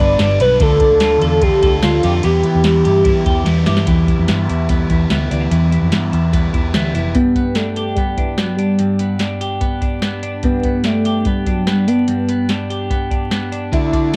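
Bright and nostalgic, this jangly indie pop excerpt rides on an up-front, twangy twelve-string electric guitar playing arpeggios throughout, over a soft vintage rhythm box with a deep kick, crisp snare and metallic hats roughened by cassette tape, while a dark, round, foam-muted fingered bass and a crunchy overdriven guitar with phaser carry the opening half, and a velvety, detuned sawtooth synth lead with chorus, vibrato and portamento sings the melody, dropping out at 3.4 seconds and returning at 7.1 seconds, heard as a dry home cassette recording with vinyl crackle.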